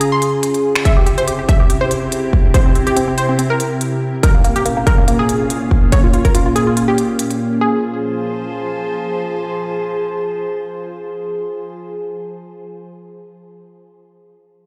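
A wave-folded, detuned sawtooth unison pluck carries the melody up front with delay and a filter sweep in this menacing, chaotic half-time wobble dubstep fragment, over a bright, morphing wavetable pad of sustained chords pumping with sidechain and chorus, crisp finger snaps and hi-hats from a tape-warm dubstep kit, and a punchy electronic kick that hits from 0.9 to 6.3 seconds, all heard through a big sound system in a bare room with large studio reverb.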